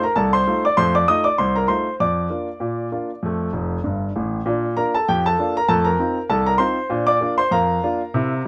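Lively and playful, this short ragtime piano passage, cut from a longer piece, moves at 98 BPM in 2/4 with a light swing on the sixteenth notes, set in B-flat major. A clear concert grand piano plays solo throughout, sitting up front with a natural tone and a deep bass, ranging from F1 up to Eb6. The harmony opens on F7 and travels through Bb/F and F before settling on Bb, then returns through F7 to close on Bb. A brief piano fill from 3.5 to 4.5 seconds bridges the first phrase into its repeat, which begins at 4.5 seconds. Light reverb gives the instrument a touch of space.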